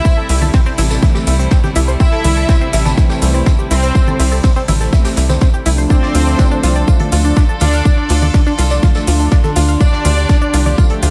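Dark and hypnotic, this excerpt of melodic techno rides a punchy, tape-warm electronic kick and a tight, driving sawtooth sequencer bass up front, with overdriven electronic shaker, metallic hi-hats and congas alongside a big acoustic rock kit of hi-hat, snare and tambourine sitting dark and rolled-off in the background. A detuned, chorused sequenced synth spins arpeggios with tape echo, while a smooth unison supersaw carries the melody through dub echo and a lush, vibrato-rich studio violin section adds a second line higher with its own tape echo, all three breathing with sidechain pumping. Beneath them a distant, floating chamber string section holds sustained chords with 12-bit sampler grit, a bold, brassy analog pad adds chorused stabs from 0.9 s, and the harmony moves from C6 to Dm at 5.9 s inside a small room ambience.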